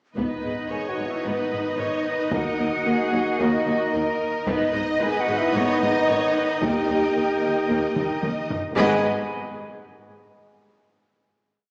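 Heard from further back in a reverberant concert hall, with a small-speaker sound, this short, complete piece of epic orchestral film scoring carries an epic, dramatic mood in a steady four. A rich, close studio violin section sings the expressive bowed melody with vibrato, while a pure, bright flute group doubles the tune at the octave and a smooth, lush symphonic violin section adds a counter-melody beneath. Underneath, the violas drive a rhythmic ostinato with a soft attack and the cellos push a bowed bass ostinato, with double basses doubling the bass line in the background. Mellow French horns hold sustained chords in a classical style, and a tight, vintage-toned trombone section adds slow swelling chords. Taiko drums land single big strokes with heavy sticks, and their fill from 8.0 to 8.8 seconds leads into a final held chord that rings until 10.9 seconds.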